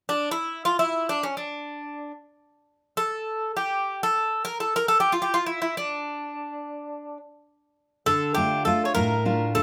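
Cool and brooding, this short excerpt of Greek folk music in free time and D harmonic minor opens with a solo bouzouki, its metallic, double-strung tone sitting up front in a moderate studio reverb. At 8.1 seconds a fingerpicked nylon-string guitar enters with a bright, full-bodied classical sound, accompanying the bouzouki melody on a D minor chord until the close at 9.6 seconds.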